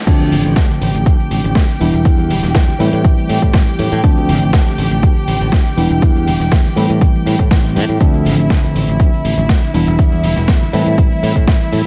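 A straight 4/4 groove at 121 BPM drives this groovy, funky slice of filtered disco house in D dorian, tuned to A4 = 436 Hz. The excerpt is cut from a longer piece and sits at the drop from start to finish. An overdriven electronic kick stands up front, punchy and layered, the loudest part in the mix. Beneath it, a dusty sampler-style kit of crash, hi-hat, shaker and medium-tuned snare adds gritty, compressed overdrive, with sidechain pumping on its hats, percussion and cymbals, while very quiet maracas and congas played with hard hands bring small-room acoustic color. A bright, growly fingered electric bass plays direct and punchy under a worn, slightly out-of-tune tine electric piano, which carries the accompaniment through phaser, dub echo and pumping. Further back, a studio violin section holds smooth, bowed sustained chords with vibrato, roughened by vintage 12-bit sampler grit and pumping as well, as the harmony cycles Dm7, Em7 and Am7 inside an echo-heavy mix of light reverb and digital ambience.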